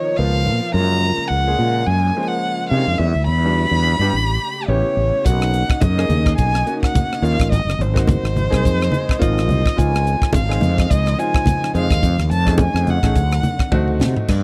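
Nocturnal and funky, this electric jazz fusion excerpt moves at 106 BPM in 4/4 with a light sixteenth-note swing, as an expressive bowed violin with vibrato and portamento carries the melody up front over a clear, worn concert grand piano, a very quiet, dark and woody string section holding lush sustained chords, and a growly fretless electric bass. Low-tuned, ringing congas slip into the background at 5.2 seconds, and a crisp, polished drum kit with a punchy kick and high-tuned snare joins at 5.3 seconds, closing with a fill at 13.7 seconds. The harmony drifts through extended chords such as Db13, Bmaj9 and F7alt, captured in a dry, close 1970s-style studio sound.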